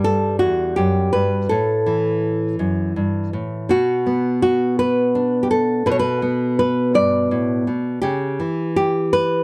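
A fingerpicked nylon-string guitar plays alone in this brief folk piece, its full-bodied, deep classical tone sitting up front with a touch of finger squeak audible on the strings. The mood is gentle and pastoral, moving at an unhurried 55 beats per minute in a straight 6/8 lilt. The guitar spans a range from E2 up to D5, opening on an Emadd9 chord that shifts to A5. At 3.7 seconds a second section begins on Bm and settles there before a rootless A7/C# arrives at 8.0 seconds. The sound is dry and close, with little reverb, like a 1970s studio recording, and the passage is cut from a longer piece.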